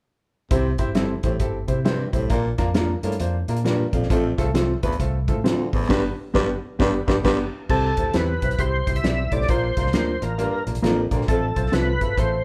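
Lightly reverberant and captured like a band playing live in one room, this short cut of uplifting, swung 1960s-style soul at 134 BPM in C major rides on a fat-snared, tight-kicked drum kit and a round, foam-muted electric bass, with a raspy, breathy baritone saxophone riff, a woody, brilliant upright piano accompaniment and clean, compressed electric guitar stabs, reaching a band accent at 5.9 seconds before a gritty, overdriven tonewheel organ takes the melody at 7.7 seconds through chorus vibrato and a slow rotary speaker.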